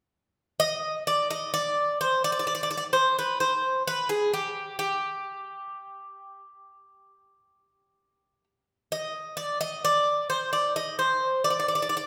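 Melancholic and dark, this Greek folk excerpt in 9/8 at 130 BPM features a solo Greek bouzouki, bright and metallic with picked double strings and some octave-doubled courses, sitting up front from 0.6 to 12.1 seconds within the G4 to Eb5 range while a wet recital hall reverb of a church or concert hall space surrounds it.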